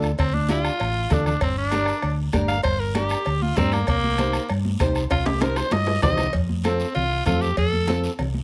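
A driving, danceable cumbia groove at 195 BPM in straight 4/4 is laid down by a soft-beater bombo, a close, dry guiro, bright, damped high-tuned congas sitting in the background, and ringing metal-shell cowbell and timbales, with a drum fill from 5.1 to 6.3 seconds. A round, dark hollow-body electric bass sits up front beside fingerpicked classical nylon-string guitar accompaniment, moving through Dm, Gm and Cm7 before landing on F as a new section begins at 6.3 seconds. Over it all, a gritty alto saxophone with vibrato takes an edgy, present solo, captured with close, detailed microphones and light reverb in this short cut from a longer piece.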